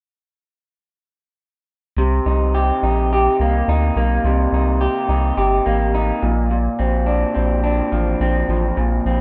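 An electric guitar through a small old amp sits up front from 2.0 s, its picked, slightly broken-up, lo-fi tone bathed in lush chorus and vibrato as the harmony moves from Cm7 to Bbadd9 at 6.2 s. A round analog bass with a deep, dark, sine-like body and a filter sweep holds the low end, giving this dreamy, laid-back indie and bedroom pop fragment a lightly swung 4/4 feel. Light reverb and a rough home-demo mix keep the sound casual and unpolished.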